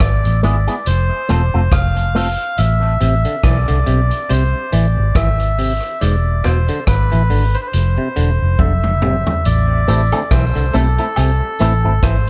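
Spacious and heavy, this dub reggae excerpt rests on a round, foam-muted bass sitting up front and a distant, roomy vintage drum kit with a rolled-off top, its punchy kick, hi-hat, rim clicks and toms capped by a fill that ends at 9.5 seconds. Above them a reedy, breathy melodica carries the tune through dub echo, while a stringy clav played through a combo amp adds echoing arpeggios from 3.0 seconds. A bright, twangy guitar with an envelope filter appears briefly at the start and again at 9.9 seconds, when tambourine and woodblock join in the background, both parts trailing dub echo within a small room ambience.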